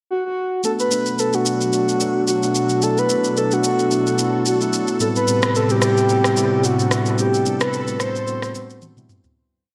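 Soulful and deep, this short amapiano piece moves at 110 BPM in 4/4 with a 16th-note swing, set in B phrygian. A breathy, flute-like synth lead carries the melody from the very start, sitting up front with chorus, delay and vibrato as it shapes hook phrases. At 0.6 seconds, after a pickup bar, the breakdown begins, with a mellow tine electric piano playing syncopated, rootless chords and an electronic afro-pop drum kit laying down the amapiano groove of steady shaker, soft kick and syncopated rim, its toms and rim clicks touched by gated reverb. A lush, detuned unison pad with chorus fades in on slow-attack sustained chords, moving from Bm7 to Am7 at 5.0 seconds. The whole piece sits in a wet plate reverb with a bright 1980s-style digital sheen, fading out from 7.2 seconds as a drum fill closes it.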